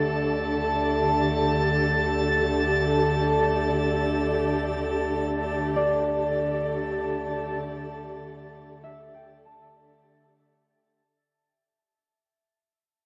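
Heard through the soft haze of a cassette home recording and a wet spring reverb, this serene, spacious ambient excerpt floats in free time around D, cut from a longer piece. A dark studio string section sits up front, bowed close with vibrato and portamento, holding expressive sustained chords from D3 to D5 and washed in shimmer reverb. Beneath it, a round analog bass holds a deep D2 with a sine-like, triangle-shaded tone, and a hand-pumped harmonium breathes a reedy, mellow drone between D3 and A3. High above, a glassy texture of drifting overtones hovers from A5 to A6, its slow attack and long release thickened by chorus, built-in reverb and shimmer reverb. At 5.8 seconds a concert harp enters with thumb-plucked, ringing arpeggios between D5 and A5, trailed by tape echo and shimmer reverb. A fade-out begins at 2.7 seconds and carries the whole passage to its close near 10.9 seconds.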